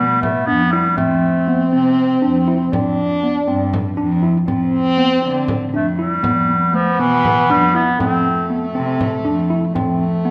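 Set in a restless 7/8 at 239 eighth-note beats per minute with a straight feel, this short chamber piece in F lydian is tuned slightly low at A4 = 437 Hz and has a playful, restless mood. A bright, vintage-toned clarinet carries the classical-style melody, stating a brief phrase that ends at 1.7 s and returning at 5.8 s. Alongside it, a solo French horn with light vibrato sings a warm, roomy second line, while a worn, slightly out-of-tune tine electric piano spins arpeggios through a lightly overdriven, speaker-tinged tone. A single bowed cello played sul tasto anchors the bass with a soft attack and a smooth, floating top, and a close acoustic frame drum adds quiet percussion. After an opening E5, the harmony settles over an F pedal, moving through chords such as C5/F and Em/F, and a wet recital-hall reverb gives the ensemble a resonant sense of space in this passage cut from a longer work.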